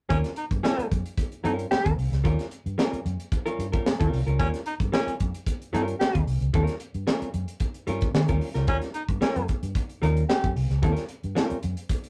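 A breathy baritone saxophone with vibrato and a whispered, intimate tone carries a mellow second line from 0.1 s to 10.5 s in this strutting, gritty funk excerpt at 112 BPM in Eb mixolydian, tuned to A4 = 435 Hz. Beneath it, a vintage hollow-body jazz guitar plays clean, compressed, picked accompaniment over a rootless Eb9, and a foam-muted fingered electric bass adds a round, dark low end. A crisp fusion drum kit with a high-tuned snare and punchy kick holds the straight 4/4 until 12.1 s, all set in a short, wet booth ambience with the rough feel of a rehearsal-room recording, tube saturation and cassette tape.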